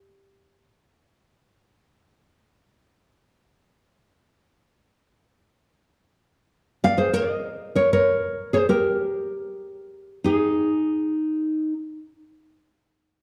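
This relaxed, sunny Hawaiian fragment in free time, tuned to A4 = 441 Hz, features a solo nylon-string guitar, fingerpicked and up front with a full-bodied, deep classical tone ranging from Eb4 to F5; after a brief opening phrase it returns at 6.8 seconds over harmony moving from Ab6 to Gdim, all bathed in a wet recital hall reverb within a dark, warm production.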